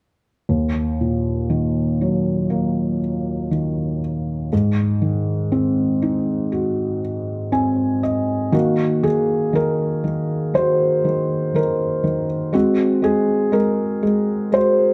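Folk piece, heartbroken and melancholic, in which a felt-muted upright piano, soft and dark with thick felt and audible action noise, carries the melody up front in a large studio reverb over a slow straight pulse, slipping in a brief fill at 7.0 seconds before the second section begins at 8.5 seconds.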